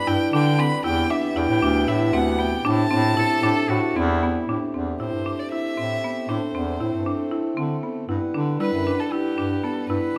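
Moving in a straight 7/8 at 233 eighth-note beats per minute, this pensive yet urgent piece of contemporary chamber music in A dorian, cut from a longer work, sets a buzzing, woody marimba struck with hard mallets rippling through arpeggios over a soft-attacked bass clarinet line and the breathing, mellow sustained chords of a pedal harmonium. A rich, intimate violin carries the melody with light vibrato and an airy sul tasto bow, while a dark, gut-strung cello adds a brief second line from 3.2 to 4.5 seconds. The harmony drifts from G through Em and Am7 to Gmaj7 at 8.1 seconds, all set in a recital hall reverb that lingers for 1.6 seconds.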